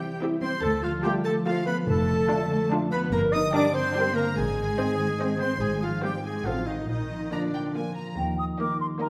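A dark, distant clarinet carries a second line through this mischievous, magical cinematic passage in three, joined by a soft-edged oboe, an intense, clear violin section and a bright, ringing concert harp fingerpicking arpeggios. In the background, a rich violin section holds the expressive melody while violas add focused accompaniment, a tight, mellow French horn section sustains chords, and smooth bowed cellos and double basses anchor the bass until 8.5 s. At 8.2 s a pure, hollow silver flute steps up front as the harmony settles on Eb, all bathed in a wet recital hall reverb in this passage cut from a longer piece.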